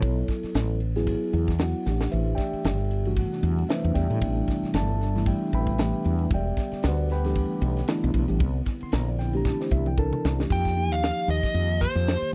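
Mellow tine electric piano with a phaser, woody fretless electric bass and a crisp fusion drum kit open this slick, intense excerpt of electric jazz fusion at 114 BPM in 4/4, with a 16th-note swing. The round, punchy bass sits up front beside the piano's clean chords, while the polished kit features a high-tuned snare and a tight kick among its cymbals and toms, with fills along the way. At 2.8 seconds a moody analog pad fades in behind them, its detuned, wave-folded tone thickened by chorus and a sub octave. Lush extended harmony moves through chords such as Am11, Em11 and C13. A drum fill at 9.5 seconds leads into a new section at 10.5 seconds, where a dark, smooth lead guitar enters with a picked, overdriven melody carried by slapback echo. The sound is dry and close, like a 1970s studio session.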